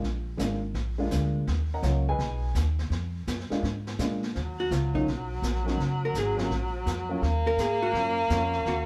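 Cool and swinging, this short cut from a longer small-group jazz piece moves at a brisk pace in a swing and bop style, heard from further back in a studio room with moderate reverb. A dark, mellow baby grand piano comps from the start, its short sustain and audible action noise giving it an intimate, natural feel. Beneath it an upright bass plays pizzicato with a woody, up-front tone, while a brushed drum kit sits distant and roomy, with a medium-tuned snare and a punchy kick. At 4.3 seconds a baritone saxophone enters with a vibrato-laden, jazz-style second line, and at 4.6 seconds a clean, picked hollow-body archtop guitar takes the melody with a dark electric tone. The harmony circles through dominant seventh, minor seventh and plain minor chords before settling back on a minor seventh as the horn enters.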